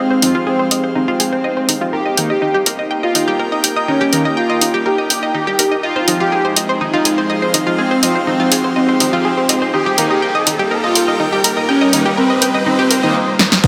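A dark, cinematic melodic techno build-up, cut from a longer piece, opens with a smooth, detuned supersaw melody with delay, a round analog pluck arpeggio with chorus and digital delay, a morphing wavetable pad with phaser in the background, and an airy, breathy pad, all pumping with sidechain over a shifting Fm7 and Eb. Fat, brassy synth stabs with chorus join almost at once, along with a punchy deep house kit of snare, hi-hat and crash up front, a very quiet, saturated sequencer bass, and a background riser and downlifter from 2.8 seconds. A drum fill leads to a deep, layered electronic kick and a gritty, dark ride cymbal that arrive only at 13.6 seconds, all inside a wet digital room reverb.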